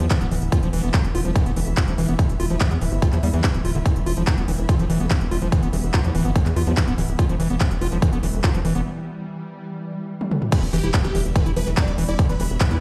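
A punchy electronic kick drives this psychedelic trance passage at 144 BPM in a straight 4/4, sitting up front with a tape-warm weight alongside a big-room dance kit of crisp hi-hats, handclaps, toms and crash cymbal, both re-recorded in a large room. In E phrygian, the mood is alien and psychedelic: a tight, saturated sequencer bass drives low underneath, while an overdriven acid bass riff adds squelchy, gritty, resonant character with sidechain pumping and dub echo. A swarming, tense drone of detuned sustained chords evolves in the background with granular shimmer and built-in reverb, joined by a very quiet symphonic string section that sounds clear and biting, and a faint, nasal vowel-sweep wobble bass entering at 1.1 seconds. After a break and a drum fill, the drop arrives at 10.5 seconds, where a huge, thick supersaw melody bursts in with phaser, vibrato and dub echo, accompanied by a barely audible electronic impact. 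The whole mix sits in a stone-room reverb, as if played on a big sound system in a bare space, and the passage is cut from a longer piece.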